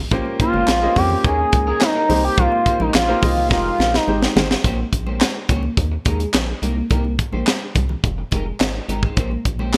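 A rubbery, hollow square-wave bass starts this danceable, late-night early-eighties boogie funk piece at 106 BPM in Bb dorian, joined by a tight, dark funk drum kit with handclaps and gated reverb, very quiet bright congas, a slightly broken-up electric guitar riff with lush chorus sitting in the background, and an open-sounding baby grand piano with long sustain that drops out at 4.5 seconds, while an expressive, nasal synth lead with vibrato, chorus and slapback echo carries the melody up front until 4.4 seconds, as a drum fill that began at 3.5 seconds leads into the second section at 4.6 seconds.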